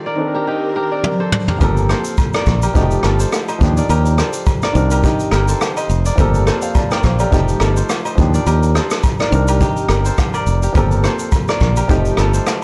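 Afrobeats at 105 BPM in G minor, mellow and sultry and cut from a longer piece: a barely audible buzzing marimba melody and lush bowed strings open alongside a polished grand piano and a ringing, fingerpicked kora riff with analog delay, before a drum fill at 1.0 seconds brings in a brush kit with a punchy kick and vintage sampler grit, joined at 1.6 seconds by a bright fingered electric bass and background agogo bells and woodblock in a small room as the chords cycle through Cm9, Gm11, F9 and Ebmaj9.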